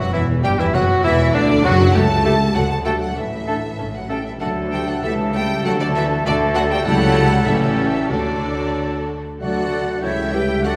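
Graceful and cheerful, this brief passage cut from a longer classical-period orchestral movement moves at 98 BPM in 2/4 with a rubato feel, in D major. A clear, lush symphonic violin section carries the melody in a high register, while an oboe with a smooth top, an airy, close-miked small flute group, a dark clarinet set in the background and a very quiet, rich chamber violin section weave second lines around it. A very quiet chamber viola section and a bassoon with light vibrato supply accompaniment, and a mellow, punchy French horn section holds sustained chords from the background. The bass rests on a distant, even cello section and an intense chamber double bass section, which enters at 0.1 s, and most parts play through to about 10.8 s. The harmony circles around D and A7 over C#, with a brief Asus4 resolving to A, and the orchestra sits in a wet recital-hall reverb that gives the sound the bloom of a church or concert hall.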